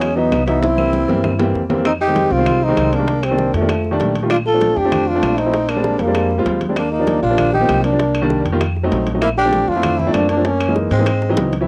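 A straight 4/4 pulse drives this fiery, sophisticated Afro-Cuban jazz fragment, where a close-miked trombone with scooped notes, vibrato and plate reverb carries the melody up front over a raspy, growling tenor saxophone second line, an intimate grand piano with audible action noise, and a bright pizzicato upright bass, while tight bongos, ringing congas and timbales, and distant claves sit in the background, with drum fills at 0.6 and 11.2 seconds and a cassette-tape haze over the horns and piano.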